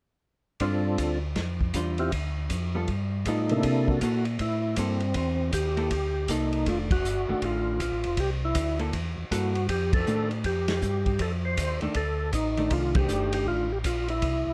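A dark, warm production with light reverb opens on a short cut from a longer soul jazz organ trio piece, bluesy and soulful, swinging at 159 BPM in 4/4. A percussive tonewheel organ carries the melody with a full, lightly overdriven tone, chorus vibrato and a slow rotary speaker, its second harmonic percussion sitting up front. A second tonewheel organ plays the bass line, mellow and round with audible key click and its own slow rotary spin. A clean, compressed hollow-body electric guitar picks out the accompaniment, and a vintage acoustic drum kit in a small room keeps time on hi-hat, ride, snare and punchy kick, its cymbals dusky and its top rolled off. The harmony moves from G7sus4 through Dm and G9 into a long stretch alternating C13 and F13, with the whole band striking accents at 6.9, 9.9 and 12.9 seconds.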